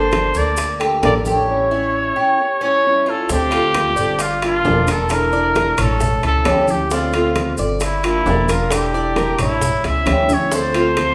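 A breathy, intimate trumpet carries a nostalgic melody up front over a boxy, fingerpicked old ladder-braced acoustic guitar, bright metallic arpeggios from the Cuban tres and a thumpy pizzicato upright bass on gut strings, joined from 0.1 s by ringing low-tuned congas, tight high-tuned bongos, grainy maracas and metal-shell timbales, with a drum fill arriving at 9.8 s in this danceable Cuban son and guajira piece, played live in one room and bathed in a wet large studio reverb.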